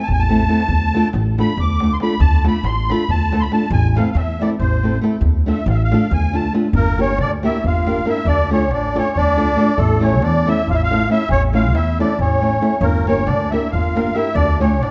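A shimmering, wet-tuned musette accordion leads up front over fingerpicked flamenco guitar with fresh strings and audible finger squeak, woody pizzicato upright bass and a deep clay-shell darbuka in the background, its fill running from 0.2 to 0.7 seconds, in this virtuosic, bittersweet Balkan wedding-band piece in a fast 7/8 at 277 BPM. The accordion's vintage, band-limited opening solo sits in D dorian sharp4 until 6.7 seconds, when the music shifts to G dorian sharp4, and at 6.8 seconds a breathy, nasal melodica enters softly with a second line. A moderate scoring-stage reverb surrounds the band, and the compressed, saturated darbuka adds a gritty depth beneath it all.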